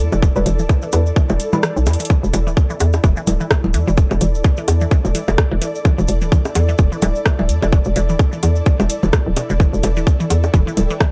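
A hollow, bouncy FM bass and an ethereal pad with ensemble chorus open this clinical, quirky minimal techno excerpt, both pumping against a tight, up-front kick, with a squelchy phased blip pluck, bongos and congas, a grainy tube shaker and a booming analog drum machine of metallic hi-hats and rim clicks filling in the swung groove. A muted, nasal dub chord stab with lush chorus and analog delay sits in the background from 0.4 to 1.6 seconds. The kick briefly drops out before a drum fill leads into the drop at 2.1 seconds, all captured as a dry, gritty hardware recording with transformer saturation.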